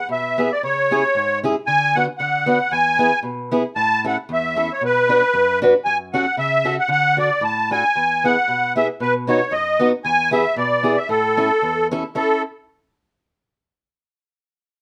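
A reedy musette accordion carries the melody from the very start, its shimmering musette tuning sitting mid-forward and up front in this bouncy, festive piece of alpine folk. Beneath it, a fingerpicked acoustic archtop guitar enters at 0.1 s, its boxy, warm body supplying the accompaniment from low bass notes up into its middle register. The music moves in a lightly swung 2/4, and the chords travel through a lively folk progression that comes to rest on A before a new section begins at 12.2 s. Both instruments play until 12.4 s, and a moderate studio reverb gives them a touch of room around their close, present sound. This excerpt is cut from a longer piece.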